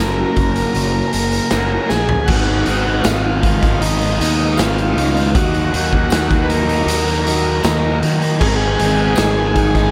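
A buzzy, overdriven combo organ carries the melody through a diffuse ambient delay over a double-tracked, phased guitar riff and a round, fuzzed fingered bass, while a gritty, punchy garage drum kit kicks in up front at 0.4 seconds and a very quiet, jingly tambourine joins at 0.8 seconds, a drum fill at 1.9 seconds tipping this trippy, hypnotic psychedelic rock excerpt into its minor-chord passage in a small, lightly reverberant room.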